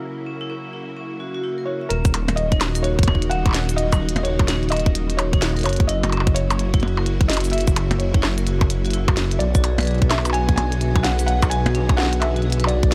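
Eerie and melancholic, this IDM excerpt moves at 128 BPM in 4/4 with a 62% swing on the sixteenths, set in Eb phrygian and tuned to A4 = 438 Hz. It opens with a felt-muted upright piano carrying a soft, intimate melody roughened by vintage 12-bit sampler grit and dub echo, over silky string-machine chords held in the background with ensemble chorus, while a hard-mallet vibraphone rings out metallic arpeggios through analog delay and a filter sweep in a boxy small room. At 1.9 seconds a deep, rumbling detuned saw bass arrives up front with tube saturation, joined by a glitchy kit of cabasa, clicky low-passed hats, percussion blips and a tiny snare, and at 2.0 seconds a tight, tape-warm electronic kick punches through with studio reverb. The chords shift from Gb7 to Ebm7, back to Gb7, and settle on Bm6, giving the passage a shadowy, unresolved pull. The mix is echo-heavy and dry of room reverb overall, with the bass and kick sitting most prominently.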